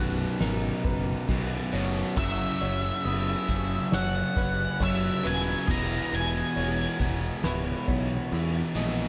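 Post-rock at a slow 68 BPM in B major, this euphoric, cinematic excerpt moves from Bmaj7 to F#7sus4 at 2.2 seconds and Emaj7 at 5.7 seconds, set in a lush hall reverb that gives a big arena sound. A bright fingered electric bass, a distorted and scooped guitar riff alongside an overdriven one, a clean twelve-string electric guitar playing arpeggios, and a muted upright piano with audible action noise and tape echo build a dense bed, while a very quiet pedal steel holds sustained chords played with volume swells and slide. Soft-mallet drums with a fat snare and boomy kick enter at 0.4 seconds, and from 2.2 to 7.0 seconds a dark octave-fuzz lead guitar sits up front with a melody drenched in slapback and tape echo.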